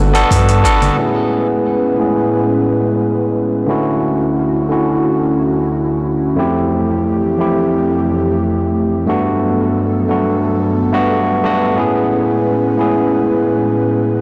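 Sunny and warm, this sunset chillout fragment is cut from a longer piece and moves in an even, straight 4/4. Round, deep analog bass and a layered electronic kit of metallic hi-hat, shaker and congas, roughened with overdrive and studio reverb, sound only briefly at the opening before dropping out by 1.0 seconds. Throughout, a gritty, barky tine electric piano, pushed through a combo amp and sitting up front, carries the accompaniment through a low-pass filter and digital delay. Beneath it, a soft, breathy pad with a detuned sawtooth edge, a noise layer and chorus holds long, slow-blooming chords. The harmony glides through lush ninth chords, from Gmaj9 to Amaj9, Dmaj9 and Fmaj9 before returning to Gmaj9 and Amaj9. A moderate plate reverb frames a blown-out, overdriven recording that feels saturated.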